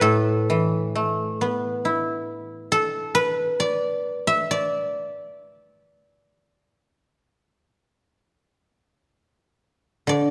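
A solo guzheng, played with fingerpicks, sits up front with a bright, silvery, ringing tone, moving freely in rubato across a range from A2 to E5 in this short excerpt of Chinese traditional plucked-string music. The mood is elegant and serene, and the instrument is tuned slightly below standard pitch at A4 = 436 Hz. A moderate concert hall reverb of about 1.8 seconds surrounds it within a dark, warm production.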